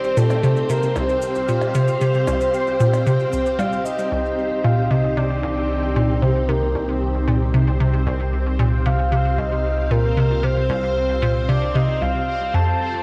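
A soft synth lead, layered in octaves, opens this hypnotic, cosmic stretch of sequencer-driven space music, carrying the melody with a round, dark tone, vibrato, chorus and tape echo over lush string-machine chords that swell in slowly with an ensemble chorus. Beneath them a bubbling, resonant texture shifts through random filter steps and trails off in its own reverb, while a cabasa and electronic percussion blips, re-recorded in a large room and echoed on tape, tick along quietly. From 0.2 seconds a hollow, bouncy square-wave pluck sits up front, repeating a low riff with a fast attack, short decay and a moving notch, softened by chorus and tape echo. At 4.1 seconds the percussion drops away, a deep sine sub bass enters, and the harmony opens up from a plain minor chord to one with an added ninth. A moderate plate reverb and the soft grain of cassette tape wrap the whole excerpt, which is cut from a longer piece.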